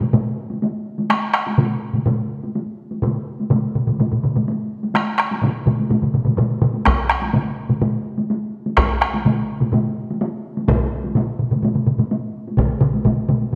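A straight 4/4 pulse at 125 BPM drives this ceremonial, powerful Japanese traditional taiko excerpt, where close, dry solo taiko drums struck with heavy sticks sit beside three up-front taiko ensembles (one hard-stick group with a vintage, band-limited tone, one heavy-stick group in a live room, and a second hard-stick live-room group that joins at 6.9 s), all carried by a scoring-stage reverb.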